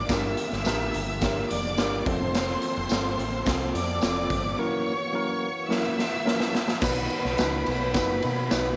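Uptempo 1960s-style soul at 107 BPM in a straight 4/4, this short cut from a longer piece feels joyful and warm, with tuning set slightly sharp at A4 = 444 Hz. A raw garage drum kit sits up front, its punchy kick, medium-tuned snare, hi-hat, ride and crash saturated and gritty in a pumping, stone-walled room, with a drum fill from 5.7 to 6.8 seconds. A round, dark fingered electric bass holds the low end, while a bright, lush studio string section carries an intense, vibrato-rich second line high above. In the background, a worn, slightly out-of-tune tine electric piano adds lightly overdriven accompaniment through its built-in speakers, a fat tonewheel organ holds sustained chords through a fast rotary speaker with chorus vibrato, and a jingly, vintage tambourine rattles along. The harmony moves from Gm to F and Gb7 before landing on B at 6.8 seconds as the section repeats, all framed by light reverb and small-room ambience.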